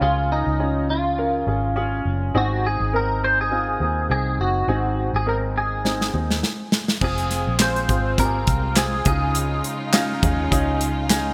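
A twangy, clean electric guitar carries the melody over a clear baby grand piano and a dark, foam-muted fingered bass in this driving, dramatic piano-driven pop excerpt with a light swing and bright 1980s-style digital production. A punchy modern drum kit with handclaps and crash cymbal enters on a fill at 5.9 seconds, and at 7.0 seconds a lush bowed string section adds sustained chords as the harmony turns to F minor. The guitar drops out at 9.6 seconds while the rest plays on in a small room ambience with light reverb.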